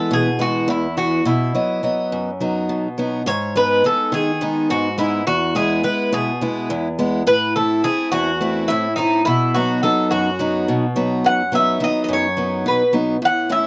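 Greek folk in 7/8, this short excerpt from a longer piece has a relaxed, warm mood, with a mellow, metallic Greek bouzouki carrying the melody on its double strings, some of them octave-doubled, while a boxy parlour steel-string acoustic guitar with fresh strings picks the accompaniment. Both instruments sit up front and play throughout the 13.7 seconds, moving from a brief opening section into a longer second passage at 3.3 seconds. The sound is a dry, close 1970s-style studio recording touched with light reverb.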